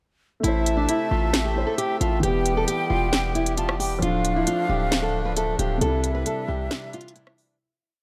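Heard in a small room with light reverb, this dark, brooding trap hip hop piece in A minor moves at 134 BPM with a half-time feel over Am, Em, Dm and C. A fingerpicked nylon-string guitar carries a filtered, looping melody like a sampled loop, joined by an airy, hollow flute counter-melody with vibrato and tape echo, a boxy grand piano holding spread, long-sustained chords, and a reedy accordion pad with light tremolo tuning. Up front, crisp hats with fast rolls and a sharp snare drive the beat over a punchy 808 with long sub-bass notes and pitch slides; the 808 drops out at 6.7 seconds for a brief break as the piece fades out from 5.8 seconds.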